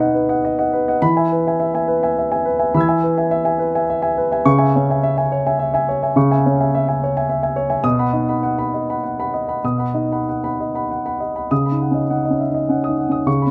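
In a rubato triple metre, this intimate, wistful neoclassical minimalist piano piece, cut from a longer work, features a warm, up-front solo grand piano ranging from B2 to G#6, moving through B, E, C#m and B before turning to a new passage at 11.5 seconds on a Badd9/C# chord, all set in light reverb.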